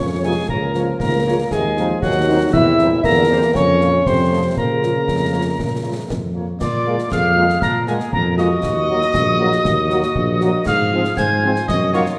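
A stern, martial military-style march for wind band in Bb minor at 118 BPM in 2/4, cut from a longer piece, with a dark, distant trumpet section carrying the melody over a very quiet French horn accompaniment, soft-attack trombone chords in the background and a mellow tuba bass. A clear woodwind section, a pure, expressive piccolo with vibrato and a mellow euphonium that drops out at 6.1 seconds supply the second lines. Close, dry concert bass drum, snare and dark clash cymbals enter at 0.5 seconds against the roomy scoring-stage reverb, and the harmony turns from Bb minor to Bb7 at 6.6 seconds and on to Eb minor at 8.6 seconds.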